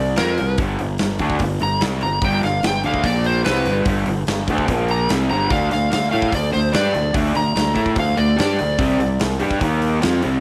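Blues rock power trio with a southern rock lean, this gritty, driving clip from a longer piece runs at 146 BPM in a straight 4/4, with an overdriven slide guitar out front taking a solo from the start, treated with slapback echo and voiced over chords moving through C5, G5, Bb5 and D5 before it stops at 9.2 seconds. Beneath it, a raw, lo-fi, double-tracked garage guitar drives the riff with picked overdrive, while a fuzz-soaked fingered bass growls low and punchy. A big acoustic rock kit enters at 0.2 seconds with a medium-tuned snare, thumping kick and hi-hat in a bright stone room, all framed by a small room ambience.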